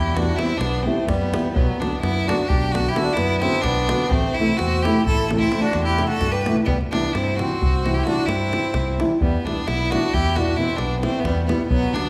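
Balkan folk in the manner of a wedding band, this virtuosic, bittersweet piece in E minor runs in a brisk 11/8 at 260 beats per minute in eighths and keeps speeding up across its 12 seconds, cut from a longer performance. Up front, a clear, focused violin played by a single player carries the melody with bowed vibrato, while a reedy accordion with slow beating plays a second line, a small thumb-plucked nylon-string guitar fills in accompaniment from 0.2 seconds, and a growly, amped fingered electric bass anchors the harmony moving from Em through Bm, Am and C back to Em. A tight, close and dry davul sits in the background, and the ensemble rings in the wet reverb of a church or concert hall.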